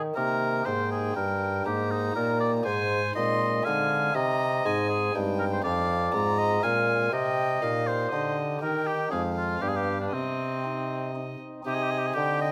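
Grave and flowing, this baroque-style sonata movement, cut from a longer piece, moves at 120 BPM in 3/4 and settles into C minor at 5.6 s after opening on E-flat harmony. An up-front solo oboe with light vibrato carries the melody over a soft chamber organ on flute stops with a gentle chiff, while a vintage-toned solo bassoon plays the bass line and a single violin with an airy, nasal gut-string period tone adds a quieter second line from 0.2 s. Close, detailed microphones capture the group in a moderate recital hall reverb, and the harmony moves through F minor and G7 to C minor near the end.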